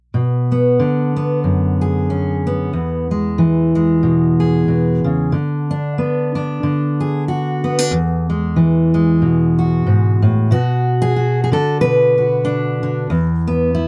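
Reflective and intimate, this short folk excerpt features a solo fingerpicked steel-string dreadnought acoustic guitar, bright and full-bodied, sitting up front at 93 BPM in 4/4 with a gentle swing on the eighth notes in B dorian. The guitar moves through Bmadd9, E, Bm/D and Eadd9 before shifting into a new section at 10.5 seconds that settles from Bm onto a bare E5. The sound is dry and close, like a 1970s studio take, with light reverb and a faint mains hum beneath the strings.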